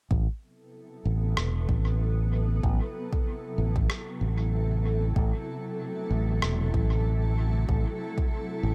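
Hazy and spacious, this ambient dub excerpt sits at 95 BPM in 4/4 with a light swing on the sixteenths, resting on a single Am69 chord in A dorian. A punchy, up-front fingered electric bass and a deep, overdriven electronic kick drum start together at 0.1 seconds, and a cloudy, evolving granular pad with a slow attack and its own reverb drifts in at 0.7 seconds to hold blurred, full-bodied chords. A muffled, pitched-down rim click carrying a dub echo sits low in the mix from 1.4 to 6.6 seconds, all framed by a light digital ambience.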